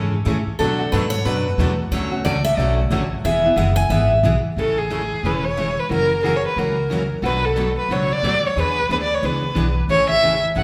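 Swinging and lively, this short piece of acoustic string swing in the jazz manouche style moves at a brisk 181 BPM in A major, with a light swing on the eighth notes. It opens with a bright, up-front picked steel-string guitar carrying a second line as a solo over the first 4.4 seconds, its fresh strings catching a touch of finger squeak. Beneath it, two more picked steel-string guitars provide accompaniment throughout, one warm, full-bodied and jumbo-sized, the other jumbo-sized, bright and sitting in the background. A pizzicato upright bass gives a woody, thumpy low end, dark in tone. At 4.6 seconds a single bowed violin takes the melody, nasal and boxy yet expressive, with vibrato and portamento, as the chords move from Amaj7 through F#7, Bm7 and E7 back home. The band sounds as if playing live together in one large studio, bathed in a wet reverb, and the passage is cut from a longer piece.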